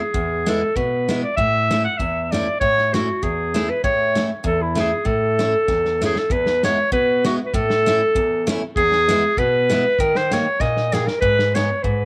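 A clear clarinet opens at 0.0 seconds, carrying a festive, jolly alpine folk dance melody in a classical style, its vintage cassette-tape tone sitting up front. A bright, full-bodied picked dreadnought guitar joins almost at once, giving a lively, swung 2/4 lilt to the accompaniment. A loose acoustic drum kit with a tight kick and medium-tuned snare sits further back, also coloured by cassette tape, and its fills lead into the second section at 6.3 seconds and return near 10.6 seconds. The harmony moves among E, A, D# and G#m chords, and the whole band shares a moderate spring reverb and small-room ambience that gives it the homely feel of a cassette home recording. This is a short cut from a longer piece.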